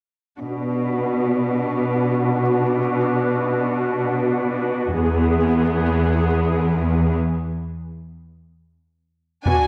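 Unfolding in free time, this brooding, futuristic cinematic excerpt in B dorian sets a focused, low-pass-filtered viola section over a rich, smooth cello section through a filter sweep and a break from 7.2 seconds, moving from B minor to E, before an impact at 9.5 seconds brings a brief intense violin note and an electronic sub drop, all heard from further back in a wet scoring stage reverb.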